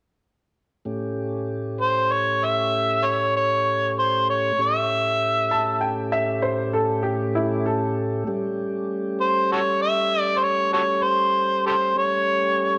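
Rollicking and soulful, this slow blues excerpt moves at 65 BPM in a straight 12/8 feel in A mixolydian, resting on an A7 chord. A clear tonewheel organ holds sustained chords through a slow rotary speaker from 0.9 s, and a gritty, overdriven, amplified harmonica takes the up-front solo melody from 1.8 s, its vibrato, scooped notes and tongue slaps colored by slapback echo in a jazz-inflected style. A woody, polished upright piano adds a brief second line between 5.5 and 8.3 s, all set in an echo chamber reverb with a hint of small-room ambience.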